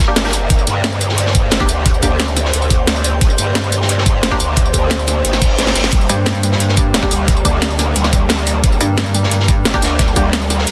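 This is a dark, technical drum and bass excerpt in G minor at 177 BPM in straight 4/4, with a mechanical, tense mood. A metallic, inharmonic drone sustains eerie chords in the background from the start, while a very quiet, gritty breakbeat kit with a rolled-off top sits beneath a louder, up-front electronic kit of cracking snare, metallic hats and tambourine, anchored by a knocking, tape-flavoured kick. A growling, formant-filtered bass, saturated and sidechain-pumped, dominates the low end, and a muted, deep dub chord stab drifts in and out with analog chorus and delay at 0.1, 4.3, 7.0 and 9.7 seconds. A reverse cymbal and a drum fill lead into the second half, where a lo-fi, detuned pluck begins arpeggiating at 5.9 seconds under lush chorus and delay, soon joined by an FM wobble bass holding G2. The master is dense and heavily limited with light reverb and audible lossy artefacts.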